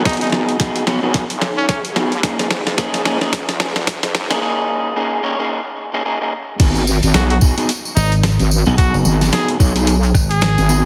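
Heavily compressed with a radio-like thinness and a lush hall reverb, this funky, swaggering glitch hop excerpt, cut from a longer piece, swings its sixteenths over a G#m7 to F#6 progression. A gritty, pitched-down boom bap sampler kit with a medium-tuned snare, crash, hi-hat and rim click sits up front beside a thumpy electronic kick, both re-recorded in a large room. A dark, slightly broken-up electric guitar plays fingered stabs with sidechain pumping and delay, while a heavy, detuned wobble bass with chorus wobbles beneath it. The build-up carries a drum fill and a filter sweep on the guitar before the drop lands at 6.6 seconds, bringing a jingly tambourine. A bright, present pop-style trumpet with vibrato and delay opens briefly, then returns as a solo melody at 7.1 seconds, and a punchy, tube-saturated slap bass joins at 8.0 seconds.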